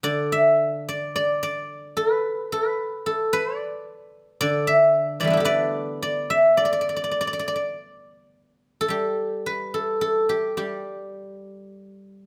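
In a free, rubato pulse of about 54 BPM in 2/4, with uneven beats, this serene, pastoral excerpt of Chinese traditional music unfolds in the D zhi mode on a solo guzheng. Played with fingerpicks across a range from D3 to E5, the acoustic guzheng sits up front with a bright, silvery, ringing tone. Close, detailed microphones and light reverb frame it, and the music moves into a new section at 8.9 seconds before the 12.3-second clip ends.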